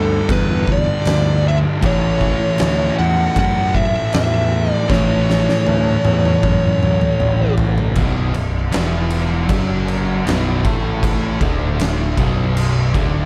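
This stoner and doom metal excerpt moves at a sludgy, ominous 78 BPM in 4/4, rooted in B minor. A compressed fuzz lead guitar sits up front with a distorted melody, its tape echo trailing behind it until it drops out at 7.5 seconds. Beneath it, two dark, picked fuzz guitars and a bright, double-tracked stack guitar grind out the riff in the background, while a growling bass with overdrive anchors the low end. An oversized, low-tuned acoustic drum kit sits up front, saturated and gritty, with a boomy kick, fat snare, dark cymbals and toms pumping in a big room, and a fill runs from 4.9 to 8.0 seconds. The harmony moves from G to A before landing on B minor at 8.0 seconds, where the heavy wall of guitars, bass and drums carries on in a dark production with light reverb and a small room ambience.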